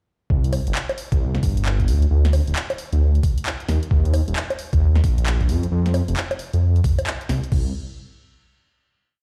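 A dark, detuned sawtooth bass rumbles up front from 0.3 seconds, its saturated unison tones beating through a skipping, syncopated line between D1 and F2 in this moody, bouncy two-step UK garage piece at 133 BPM with a swung 16th feel. A gritty, thumpy, pitched-down kick sits forward in the mix, while an overdriven house kit, lower in level, adds a cracking snare, bright skipping hats, rims, bongos, handclaps and crash. The drop runs to 7.5 seconds, and a final note carries on to 9.2 seconds, with a sound like a big system playing in a bare room.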